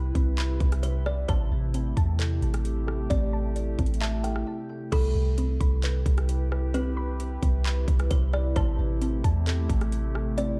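Atmospheric cloud-rap hip hop moves at 132 BPM in a half-time 4/4 feel, blissful and dreamy in C major, cut from a longer piece and lasting just over ten seconds. A woody, hollow kalimba carries the melody with a vintage, band-limited thumbnail pluck trailed by tape echo, while a warbling, nostalgic pad sustains detuned chords through chorus, phaser and its own reverb, pumping against the sidechain. In the background, a soft, round pluck traces arpeggios, its chorus and tape echo adding to the haze. Up front sit a boomy, sine-based 808-style bass and an electronic trap kit with a hard-clipped kick, metallic hats, handclaps, rim clicks and a crash cymbal, the drums entering at 0.2 seconds. The harmony rests on Cmaj7 and Am7, a brief break at 4.5 seconds leads into a new section at 4.9 seconds, and the whole mix has a dark, warm production with light reverb.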